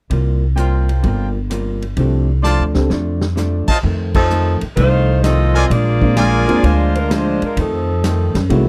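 Brassy and joyful, this brief big band swing cut in F mixolydian moves at 128 BPM, with woody pizzicato upright bass, a dark clean hollow-body electric guitar and a big-room drum kit with dark cymbals carrying the groove while a brilliant trumpet section fires stabs, a dark baby grand piano drops in, a drum fill lands at 2.4 seconds, and a mellow saxophone section takes the melody over F7 and Bb7 changes from a band accent at 4.1 seconds, all within a dry, close 1970s-style studio sound.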